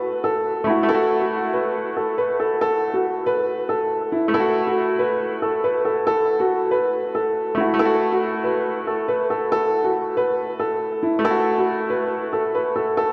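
Tense and ominous, this short hip hop fragment moves at 139 BPM in a half-time 4/4 feel in F# minor, resting on an F#m7 chord. A dark, mellow, boxy grand piano carries the melody up front between E4 and B4, trailed by tape echo, while a bright, brilliant concert grand with a worn edge and deep bass plays the accompaniment below it, both running from 0.0 to 13.1 s. The whole dreamy mix is soaked in a vast cathedral reverb, and a new section arrives at 11.2 s, shortly before the cut.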